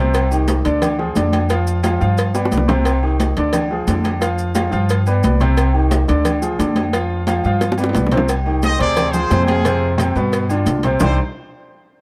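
Passionate and driving, this short salsa excerpt in C harmonic minor moves at 177 BPM, with an up-front grand piano of long sustain cycling through a minor chord progression over a woody, thumpy pizzicato upright bass on gut strings. Round, low-tuned cowbell and bongos sit close and dry, grainy maracas add a mellow shimmer, and high-tuned vintage congas ring in the background alongside distant agogo bells and metal-shell timbales in a large room, with drum fills at 2.4 and 7.6 seconds. At 8.6 seconds a tight, bright trumpet section with light vibrato and a soft attack takes the melody for the closing section in a dark production with little reverb.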